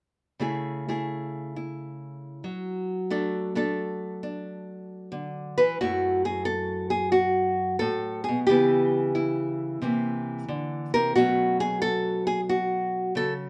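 A dark, small-sounding fingerpicked nylon-string guitar sits up front and plays alone in this moody, smoky solo jazz fragment in F# minor at 90 BPM, its swung eighths given a rubato feel as the harmony shifts at 5.8 seconds from F#m9 and D5 colours into a passage moving through F#m7, C#m7b5 and C9 toward a suspended B7 chord, all wrapped in light reverb with the intimate feel of live playing in one room.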